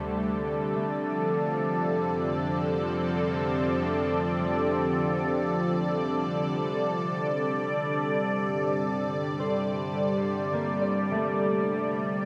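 A bright, detuned sawtooth pad with chorus sits up front in this reflective, serene ambient fragment, holding sustained chords over a dark, rumbling drone bass that fades out across its 12.3 seconds, with a reedy, breathing pedal harmonium in the background and very quiet, thumb-plucked concert harp arpeggios entering at 0.2 seconds, the whole set in a wet cathedral reverb.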